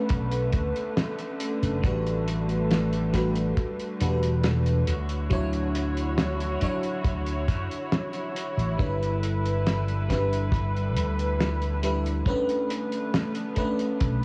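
Vaporwave in D major at a slow 69 BPM, this woozy, faded 14-second excerpt drifts through Bm9, A13sus4, Dmaj9 and G6 before returning to Bm9, carried by a lush FM electric piano with a soft pad layer, bathed in chorus and tape echo, over dark chamber strings holding sustained chords with light vibrato and a gritty 12-bit sampler character. Underneath, a bright, punchy slap bass sits up front beside a tight, dry kick, while a damped 70s kit supplies hi-hat and a fat snare with a rolled-off top and studio reverb. The whole mix has a cassette-tape haze with light reverb and small room ambience.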